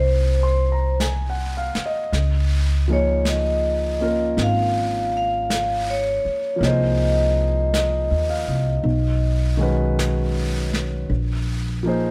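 Lightly reverberant and intimate, this wistful, melancholic jazz ballad excerpt swings gently as a ringing, metallic vibraphone with slow motor vibrato carries the melody until 10.7 seconds over a clear concert grand piano with audible action noise, a woody pizzicato upright bass sitting up front, and an airy brush kit of snare and hi-hat that joins at 1.0 seconds, moving through chords such as Abadd9, Db69 and Bb7sus2.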